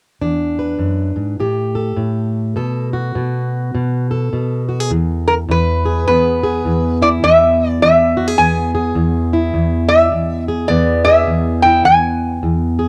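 Acoustic country blues with a swaggering, laid-back swing at 104 BPM: in a short cut from a longer home cassette recording made in a snug booth, a fingerpicked plugged-in steel-string jumbo acoustic guitar sits up front with a woody, full-bodied tone and old strings, before a metallic, nasal lap resonator guitar, played with slide and fingerpicks and carrying a cassette-tape tinge, enters at 5.3 s to take the melody in E major.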